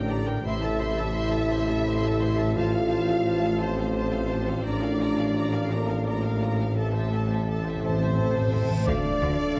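This epic orchestral film-score cue, cut from a longer piece, moves at a slow 57 BPM in a straight 6/8, its A Phrygian harmony giving a heroic yet dramatic cast as the chords pass from Am through F/A and Bb/A back to Am before landing on Dm. A lush, focused violin section carries the melody with vibrato, while a second, more distant and intense violin line enters at 0.5 seconds. Smooth violas, cellos and expressive double basses fill the background and low end, joined by a clear tuba, a very quiet close-miked trombone section holding sustained chords, and a dark, roomy French horn section that is the most prominent voice. Timpani with soft mallets and round plastic heads sit close and dry in the background, returning for a fill near the end. At 7.8 seconds an airy flute ensemble and mellow, soft-attack trumpet stabs arrive. A huge, bright reverse cymbal at 8.6 seconds then leads into an impact at 8.9 seconds that crowns the moment as a full string section enters on sustained chords. 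A wet concert-hall reverb with a 1.8-second decay wraps the ensemble in a spacious, cinematic sheen.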